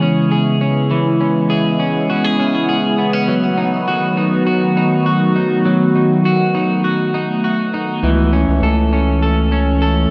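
Drenched in a huge ambient reverb, this hazy, melancholic dream pop fragment moves at 101 BPM in a straight 4/4, drifting from C#m7 to B7 and landing on A. A swirling, nasal analog pad with phaser and chorus holds slow-blooming sustained chords throughout, while an electric guitar at the edge of break-up plays twangy, fingered arpeggios through subtle chorus and delay. A round, deep analog bass enters at 8.0 seconds to anchor the final chord.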